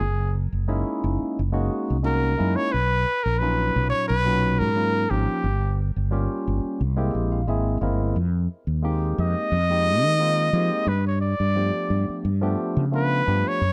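A straight 4/4 pulse at 88 BPM drives this soaring, funky stretch of electric jazz fusion, cut from a longer piece and recorded dry and close in a 1970s-style studio. A clear trumpet with light vibrato carries the solo melody up front over a dark, round fretless bass and a bright, barky tine electric piano, its clean combo-amp tone colored by phaser, which enters at 0.7 seconds. The piano slips in a fill from 6.8 to 8.2 seconds as the rich harmony moves from Gb13 through Bmaj9#11, Gm7b5 and C7b13 to Fm11 and G9.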